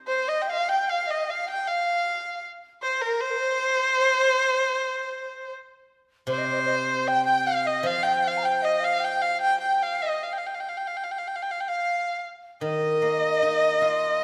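A brief silvery pluck of fingerpicked steel-string zither opens this graceful, wistful excerpt of Chinese traditional chamber music, after which a rich, bowed erhu carries the melody up front with smooth vibrato and portamento. A bamboo dizi with an airy, buzzing-membrane tone and a crisp chiff sits behind it on a second line, and the zither returns with ringing accompaniment at 6.3 seconds, all in a rubato 76 BPM flow in C yu mode within a moderate recital-hall reverb.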